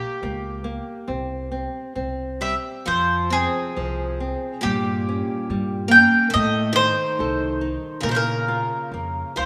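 Mournful and full of longing, this fragment of a fado-style ballad moves at 69 BPM in 2/4, with uneven, rubato beats that let the phrases breathe, and it is tuned slightly low at A4 = 439 Hz. An up-front, woody mandolin carries the melody between G4 and G5, its picked double strings lending the line a warm tone. A bright, full-bodied nylon-string guitar supports it with fingerpicked classical accompaniment, while a pizzicato upright bass with steel strings enters at 0.2 seconds to anchor the low end. At 2.4 seconds a picked twelve-string parlour guitar adds a shimmering, octave-doubled second line. The harmony drifts through Gdim, C5, Fm, Gdim again, Cm6 and Bbm, all set in a moderate, lush hall reverb with a 2.8-second tail within a rough home-demo mix.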